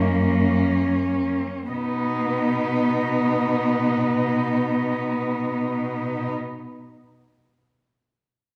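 A wet recital-hall reverb surrounds this serene, lyrical classical passage for cello ensemble in B major, cut from a longer piece and played in free time, slowing over its first 1.7 seconds as the harmony settles from F# to B. Four bowed cellos sound together until 6.3 seconds. A warm, distant melody cello with vibrato and portamento sits in the background, a rich, even second line sits close and up front, a dark accompanying cello with a smooth top stays in the background, and an expressive bass cello with vibrato and portamento holds the low end up front.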